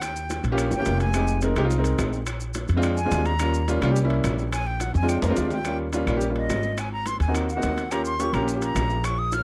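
Afro-Cuban jazz at a lively, sunny 213 BPM in Eb mixolydian, cut from a longer piece, with a breathy, bright silver concert flute soloing over the full 9.4 seconds, its tone unsteady, with vibrato and a soft attack. An up-front, thumpy pizzicato upright bass on gut strings and a warm, intimate upright piano with audible action noise and short sustain carry the Eb7, Fm7 and Bb7 changes. Behind them sit ringing metal-shelled timbales, woody claves, grainy close maracas and very quiet, distant low-tuned bongos, with drum fills at 0.7 and 5.0 seconds, all in a dry, close 1970s-style studio sound.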